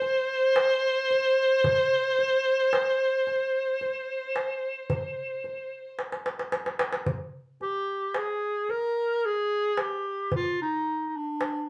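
Turkish makam ensemble music in makam nihavent on C, set in 10/8 at 111 BPM with a longing, soulful mood, heard from further back in a moderately reverberant studio room and cut from a longer piece. A bright, punchy clarinet carries the melody up front throughout, forceful and jazz-inflected with vibrato, while a dark, smooth bowed violin and a barely audible picked bouzouki with metallic double strings share a second line until 5.9 s. An up-front darbuka with a clay shell and hard-hand strokes plays throughout, adding a drum fill from 6.0 to 7.1 s as the music moves into a new section.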